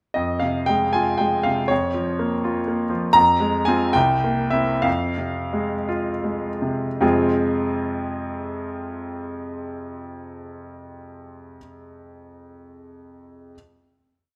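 A clear baby grand piano sits up front in a moderate large studio reverb, with the intimate sound of its action audible beneath a natural tone. This brief, complete romantic character piece for solo piano is in F minor and 6/8, with a brooding, passionate mood and a rubato feel that moves between 51 and 84 beats per minute in dotted quarters. A single-line melody rides over rocking broken chords, ranging from C2 to Bb5, as the harmony moves from F minor through B-flat minor over F and back, then to C7 before returning home to F minor. The music slows from 2.4 seconds until a final chord arrives at 7.0 seconds and rings through to 11.3 seconds, and the piano's sound lingers until 13.6 seconds.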